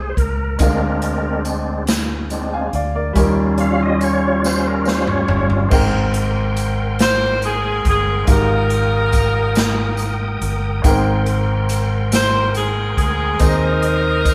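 A reedy tonewheel organ leads this jubilant yet reverent slow gospel passage, taking a solo over sustained chords from the start through 5.7 seconds, its sound shaped by a fast rotary speaker, chorus vibrato and audible key click. The piece sits in Ab major in a straight 6/8 at 47 BPM counted in dotted quarters, with a woody, natural upright piano and a round, amped fingered electric bass carrying the accompaniment and low end. An airy, polished big-band drum kit with dark cymbals and a punchy kick plays a fill from 4.4 seconds, while a jingly tambourine sits close but in the background. At 7.0 seconds a tight, bright saxophone section comes up front with the melody, played with vibrato in a jazz style. The harmony moves from Fm7/C through Bb7/D and Eb7 before settling on Abmaj9 and Fm11/Ab, and the band plays live together in a large studio room with moderate reverb, in a section cut from a longer piece.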